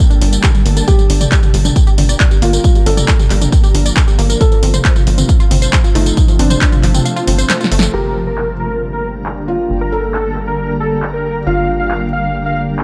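Uplifting trance with a driving, soaring mood, heard as a short cut from a longer piece in straight 4/4. A shimmering, ethereal pad holds sustained chords throughout, while a lush, detuned unison pluck spins arpeggios under a filter sweep and dub echo, both pumping against the sidechain, until the pluck stops at 7.9 seconds. A felt-muted upright piano also plays a soft, dark second line with audible action noise, colored by vintage 12-bit sampler grit and dub echo. A tight, punchy sequencer bass enters at 0.2 seconds, and a heavy, up-front electronic kick pounds alongside a tape-warm techno kit of punchy snare, handclaps, tambourine, toms and low-pass filtered hats. The kick drops out shortly before a drum fill, and at 7.9 seconds a huge, thick supersaw lead takes the melody, compressed and up front with its own filter sweep and dub echo. The mix is dry and loud, with little reverb beyond the pad's own.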